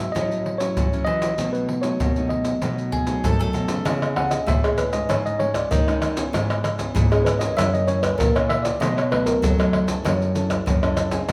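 Lively and festive, this short cut from a longer samba and choro piece moves at 97 BPM in a straight 4/4, settling into C# minor from 3.9 s. A worn, slightly out-of-tune tine electric piano carries the melody with a clean, direct tone and takes a solo from 3.9 s to the end, moving through chords such as C#m7, F#7 and B7. Two fingerpicked nylon-string guitars sit underneath, one playing classical-style accompaniment and the other holding down the bass line in the background with audible finger squeak. Maracas, pandeiro, surdo and tamborim sit up front with a vintage, band-limited sound, hard hands and a tight surdo. A bright, woody mandolin with doubled strings adds a brief picked second line between 2.9 and 3.8 s. The whole mix sits in a large, wet studio reverb over a faint mains hum.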